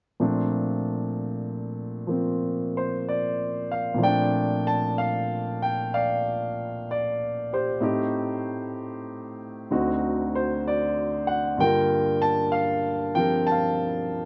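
Recorded outdoors, this short cut from a longer piece has a muffled top end and a touch of light reverb. A solo concert grand piano, warm, open and up front, with deep bass, long sustain and a slapback echo, plays a tender, romantic jazz ballad in Bb major at a slow 63 BPM with a swung 4/4 feel. It opens on Bbmaj7, moves to Bbmaj9 at 4.0 seconds, then passes through Am7b5 and D7b9 before settling on Gm7 at 11.6 seconds.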